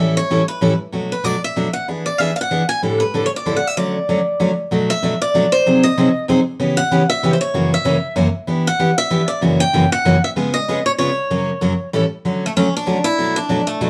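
A swung 3/4 lilt at 191 BPM drives this lively, charming jazz excerpt for two picked acoustic guitars playing live in one room with moderate studio reverb, where a boxy swing-style guitar carries the melody up front, finger squeaks audible, over a full-bodied, fresh-stringed steel-string dreadnought picking the accompaniment, as the harmony moves from D major into B minor at 4.7 seconds and back to Dmaj7 at 12.2 seconds.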